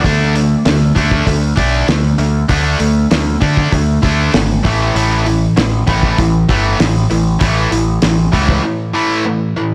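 Jangly and upbeat, this short indie rock cut in a straight 4/4 pairs a bright, double-tracked overdriven guitar riff with a growling picked bass that sits up front, both pushed hard into a blown-out, overdriven recording with light studio reverb. Underneath, a cloth-damped drum kit thuds away with a fat snare, tight saturated kick and muffled, rolled-off top, sounding like a small room captured lo-fi. The chords move from D5 to A5 at 4.6 seconds, and at 8.6 seconds the bass and drums stop, leaving the guitar alone for a brief break.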